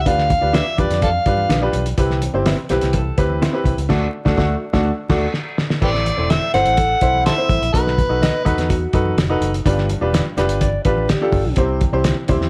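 Joyful, uptempo 1960s-style soul at 125 BPM, where an overdriven, gritty harmonica sings the melody up front in two short bursts (0.0 and 5.8 seconds) over a muffled, cloth-damped thuddy drum kit with a fat snare, a round foam-muted fingered bass, a clear grand piano, a mellow guitar riff, brief slapback-echoed guitar stabs, very quiet low-tuned congas and a band accent from 3.9 seconds that runs into a drum fill at 5.3 seconds, all dusted with vinyl crackle and small room ambience.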